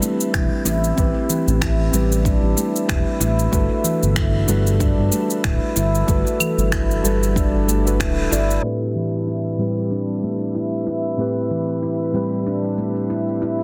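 Warm, meditative organic downtempo in A dorian at 94 BPM with a gentle 16th-note swing, where muted, felt-like synth keys with chorus and shimmer reverb pump softly over Am7 and Gmaj7, a ringing, airy handpan plays arpeggios through delay, electronic shaker, finger snaps and claves keep time, and a smooth, dark synth bass and deep electronic kick hold the low end from 0.3 seconds. The kick drops out at 8.1 seconds amid a band accent and the bass follows at 8.6 seconds, after which a filter sweeps the handpan through the closing section from 8.6 to 13.6 seconds in this dense, heavily limited mix.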